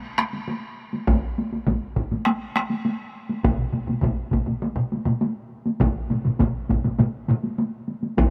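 A straight 4/4 pulse drives this short, powerful passage of traditional Japanese taiko drumming, cut from a longer piece and unfolding as a single section. Four taiko ensemble parts make up the whole texture, all sitting up front. Two begin together at 0.2 seconds: one struck with heavy sticks and carrying a vintage, band-limited colour, the other played with hard sticks in a small-room sound. A third group with hard sticks joins at 1.1 seconds, the loudest of the four, its tone compressed and saturated. A fourth, quieter hard-stick part adds another vintage, band-limited layer from 1.7 seconds, and a light reverb gives the driving, acoustic drums a touch of air.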